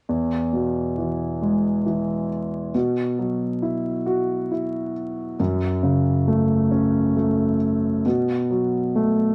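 Soaked in studio reverb, dusted with vinyl crackle and dulled at the top, this brief romantic, heartfelt pop excerpt in a straight 6/8 features an intimate, up-front concert grand piano accompaniment with deep bass, long sustain and audible action noise, moving through E, Bsus4, F#m and B5 from 0.1 to 9.3 s.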